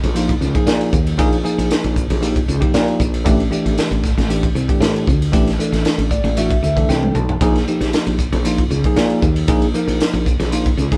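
A woody, growly fretless electric bass sits up front in this intense, funky electric jazz fusion excerpt at 116 BPM, joined by a crisp fusion drum kit with a high-tuned snare and punchy kick in a small, pumping room, and a bell-like tine electric piano that adds a fill from 5.9 seconds as the drums fill at 6.9 seconds, moving from Bb7(no3) to A7sus4 and back under light reverb with the feel of a band playing live in one room.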